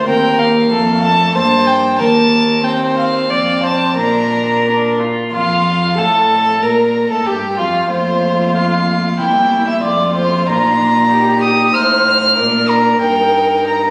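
A close, nasal violin carries the melody with light vibrato over a second violin's airy-bowed gut-string line, a distant, reedy viola and a rich cello bass in this restless, dramatic classical-period string quartet passage at 94 BPM in a rubato 2/4, captured on a phone in a wet recital hall and moving into a new section at 5.3 seconds.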